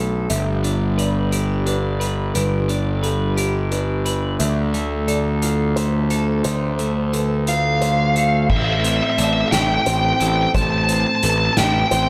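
A smooth, overdriven lead guitar sits up front from 7.5 seconds, singing a high melody through tape echo over this melancholic, cinematic post-rock excerpt in A minor, moving at a slow 58 BPM in 6/8. Beneath it, a bright, twangy twelve-string electric guitar and a soft, felt-muted upright piano in the background weave arpeggios through slapback and tape echo, while a dark, round fuzz bass pushes forward and a distant, roomy soft-mallet drum kit with a punchy kick enters at 0.3 seconds. The chords move from Gadd9 to Dmadd9 to Am7, and a concert hall reverb gives the whole a big arena sound.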